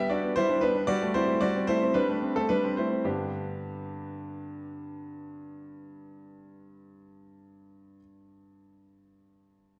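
A clear, polished baby grand piano carries this short passage of a classical-period sonatina alone, sitting present and up front across a range from G2 to E5. The mood is graceful and elegant, in G major and 4/4, with a rubato feel that moves between 104 and 118 BPM and slows over the opening 3.1 seconds. The harmony rests on G, shifts to D7 over a G bass at 0.9 seconds, and settles back on G at 3.1 seconds, where a new section begins. A wet recital-hall reverb surrounds the instrument, and the overall production leans dark. Cut from a longer piece, the fragment runs just under ten seconds.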